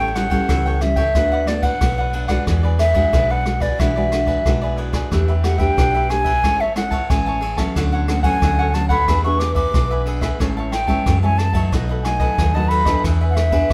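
Heard in a moderate studio reverb, this festive, sunny samba-choro excerpt in A major at 91 BPM sets a pure, mellow concert flute with vibrato on the melody over crisp, bright cavaquinho, thumb-plucked nylon-string guitar and a round, hollow-body electric bass, while a roomy brush drum kit with dark cymbals and a boomy kick joins at 0.2 seconds as the chords move from A7 through Amaj7 and Dmaj7 to a closing B7 and E7.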